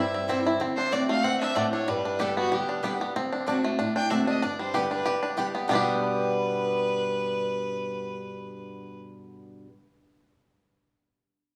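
The bowed fiddle leads this joyful, virtuosic bluegrass excerpt with a rich, earthy tone, light vibrato and a smooth top, carrying the melody up front until it stops at 9.0 seconds. Set in G major at a brisk 189 BPM in 4/4 with a gentle swing on the eighth notes, the tune moves through chords of C, D7 and G. Alongside it, a banjo played with fingerpicks rolls out twangy, percussive arpeggios touched with tape echo, while a picked steel-string acoustic guitar supplies bright, concert-style accompaniment in the lower register. A very quiet mandolin, its double strings sounding woody, adds stabs from 0.3 seconds. The whole piece sits in a rough home-demo mix with a small room sound and moderate plate reverb, cut from a longer performance.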